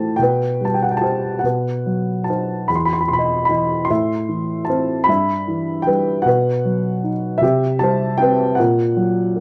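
A lone upright piano opens this wistful classical fragment, its woody, mellow, vintage tone placed up front and intimate, with the mechanical noise of its action plainly audible. Played lyrically in a flowing 6/8 with free rubato, it spans from E2 up to C6 as the harmony drifts through shadowed colors such as Am, Em/G and B before reaching F#/A# near 8.6 seconds. Light reverb and a dark, warm production lend the short passage a melancholy glow.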